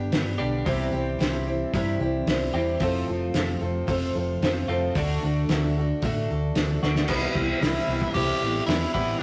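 A steady, straight 4/4 pulse at 112 BPM drives this short folk rock and heartland rock excerpt, with a jangly, nostalgic mood. The cloth-damped drum kit sits up front with a thuddy, muffled sound, a fat snare, tight kick, dark cymbals and a gritty, saturated edge, and a drum fill at 6.8 seconds leads into a new section. A picked steel-string acoustic guitar carries the accompaniment close to the listener, its finger squeaks audible, while a bright, clean twelve-string electric guitar plays a compressed riff with harmonic tremolo in the background. Underneath, a hollow-body short-scale bass gives a dark, round, amped foundation as the chords move from G through C, F and D before settling on Cmaj7. At 7.1 seconds a raspy, close-miked tenor saxophone takes the solo melody, edgy and pop-styled with vibrato and scooped notes. The rough rehearsal-room recording has a moderate studio reverb.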